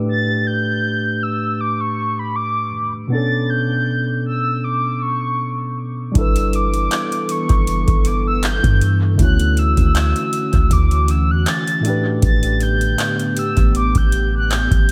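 A light reverb and heavy echo give this contemporary R&B recording a hazy, late-night sheen, its mood one of longing at a relaxed 79 BPM in 4/4 with a gentle swing on the sixteenths. From the start, a worn, slightly out-of-tune tine electric piano sits up front, lightly overdriven through a combo amp and trailed by analog delay, while a round, horn-like synth lead sings high above it, detuned and warbling with chorus, vibrato and a soft attack. At 6.2 seconds a booming analog drum machine arrives with a deep kick, metallic hi-hats and handclaps, re-recorded in a large room, alongside a clean, sine-toned 808-style bass whose boomy notes strike fast and then decay. An ethereal, airy pad follows at 6.8 seconds, its slow-attack sustained chords softened by ensemble chorus and built-in reverb and kept lower in the mix. The harmony drifts through A9sus4, Bm9, G69 and Dmaj9 before returning to A9sus4, and the passage is cut from a longer piece.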